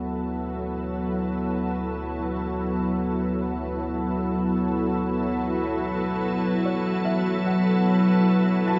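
Bathed in a wet cathedral reverb, this peaceful, luminous ambient excerpt in free time rests on D major, where a pure, organ-like synth pad with ensemble chorus holds sustained chords up front over a deep, ominous, rumbling drone that fades in beneath it, until a soft, felt-muted upright piano fades in at 6.7 s with a mellow, intimate melody sitting in the background inside a diffuse ambient delay.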